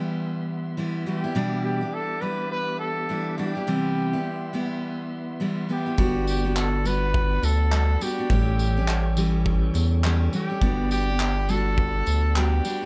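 Reflective and wistful, this short acoustic pop excerpt moves at 104 BPM with a gentle sixteenth-note swing, as a distant, lightly vibratoed trumpet carries the melody over a full-bodied picked steel-string acoustic guitar and a reedy, lightly overdriven tonewheel organ sitting in the background with slow rotary speaker and key click. At 6.0 seconds a deep, round analog bass and a loose indie drum kit with a punchy kick, tambourine and handclaps join in, and a crisp group handclap creeps in barely audibly at 6.6 seconds. The chords drift from Cmaj7 and Em7/B to Gmaj7 and A7, all set in a dark, warm production with moderate studio reverb.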